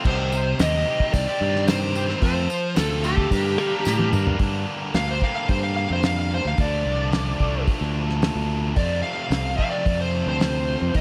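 Brooding and driving, this classic rock excerpt sets a sludgy, double-tracked distorted guitar riff and a growly, fingered electric bass up front against a dry, cloth-damped drum kit with a fat snare, tight kick and dark cymbals, while a jingly tambourine sits in the background until 4.3 seconds. A drum fill leads in, and at 4.4 seconds the smooth overdriven lead guitar, touched with slapback echo and carrying the melody from the start, breaks into a solo over light studio reverb.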